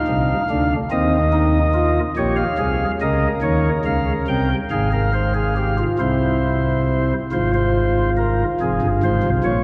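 A classical, baroque-style three-part fugue in F minor for solo pipe organ, this stately yet lively passage moves in 6/8 at 47 BPM, counted in dotted quarters, and is cut from a longer piece. The organ's soft flute stops sit up front with audible chiff and a tremulant, spanning F1 to G5 in a baroque voicing, while a long cathedral reverb and dark production surround it. The harmony passes through C major before settling onto F minor by 8.6 seconds, near the close at 9.6 seconds.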